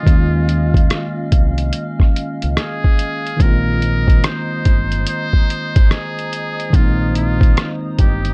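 Lo-fi hip hop with a mellow, dreamy swing, this short clip sets a buzzy, breathy muted jazz trumpet with scooped notes and light vibrato over a clean tine electric piano with cassette-tape colour, a detuned, warbling vintage pad with chorus, a round, dark dub bass with transformer saturation, and an up-front, pitched-down sampler kit of thumpy kick, hi-hat and rim click, all in a dry, gritty room as the harmony moves from Eb9sus4 to Bb9sus4 at 3.4 seconds.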